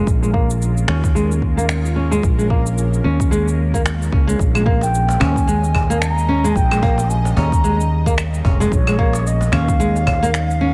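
A swung sixteenth-note groove at 111 BPM in 4/4 drives this organic downtempo passage, built on a deep, tape-warm electronic kick drum with layered electronic cabasa, finger snaps and claves. The mood is mystical, resting on a single Bbm7 chord in Bb dorian. A round, punchy fretless electric bass sits up front with sidechain pumping, while a dark, fingerpicked flamenco guitar plays arpeggios through a low-pass filter and tape echo. Behind them, a tense, string-like drone of detuned sawtooth tones holds sustained chords in the background, colored by vibrato, phaser, built-in reverb and its own pumping. At 4.6 seconds a snappy acoustic cajon joins, and at 4.8 seconds an airy, distant bansuri takes the melody with a soft attack, vibrato and digital delay. A light small-room reverb gives the mix a modest sense of space, and the recording is cut from a longer piece.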